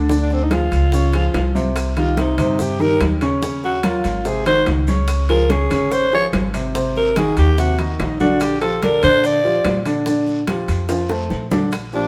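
Sophisticated and sunny, this 144 BPM Afro-Cuban jazz excerpt puts a growling, gritty alto saxophone solo up front over a warm, short-sustained grand piano, woody pizzicato upright bass, thick-skinned congas, tight high-tuned bongos, ringing metal-shell timbales, a raspy guiro and grainy maracas in a moderate stone room, with a drum fill from 10.9 seconds and a breathy, whispered trombone entering at 11.9 seconds as chords move from Ddim through Ebm11 and Dbmaj7 to F.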